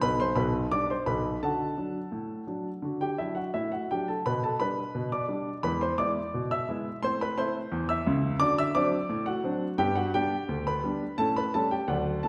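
A straight two-beat pulse in 2/4 drives this lively, jaunty ragtime piano piece, cut from a longer work. A grand piano plays entirely solo for the full 12.3 seconds, covering a broad span from deep bass notes to bright upper registers. Its tone is intimate and natural, and it sits up front with the mechanical noise of the action clearly audible. The harmony moves from G over B through D, E7, Am and D7 before resolving to G, then turns toward A7 at 11.2 seconds as the passage breaks off. A generous hall reverberation surrounds the instrument, giving the sense of a performance in a church or concert hall.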